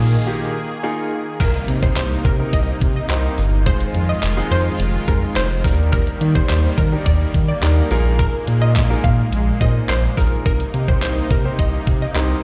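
A bittersweet, confident dance-pop excerpt opens on a short build-up, with a riser in the background, a round, deep analog bass and soft, smooth supersaw chords pumping under sidechain, a brief, very quiet touch of slightly broken-up electric guitar, and an intimate concert grand piano with audible action noise joining at 0.3 seconds. At 1.4 seconds the drop arrives with an impact as a detuned 8-bit drum machine brings a thumpy kick, handclaps, hi-hat and crash up front, while a lush, punchy unison pluck carries the melody through a slapback echo over chords moving from Cm7 through Fm7 and Ebmaj7 to Bb7sus4. The mix sits in light digital ambience, sounding as if played on a big sound system in a bare stone room.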